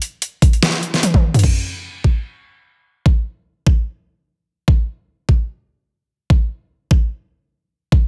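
A dense, heavily limited modern master with digital ambience frames this heavy, menacing dubstep fragment cut from a longer piece, where an overdriven, up-front drum kit of deep snare, bright hats, crash and toms hits a half-time swung drop and a fill that ends at 1.4 seconds, while a layered, knocking electronic kick enters at 0.4 seconds and carries on alone to the close.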